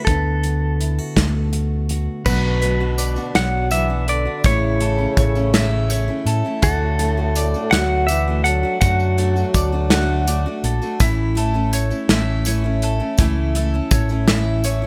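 A twangy, compressed clean electric guitar carries the melody through a harmonic tremolo in this warm, hopeful indie folk piece in 6/8, over a full-bodied jumbo acoustic guitar fingerpicked until 4.5 seconds, a round, dark electric bass and a punchy, up-front country drum kit with dark cymbals. From 2.3 seconds the arrangement builds: a bright dreadnought acoustic guitar with fresh strings, a woody mandolin playing arpeggios and a jingly tambourine in the background join, while a distant, roomy French horn with light vibrato sings a second line until 10.6 seconds, when the electric guitar also stops. A small room reverb surrounds the music.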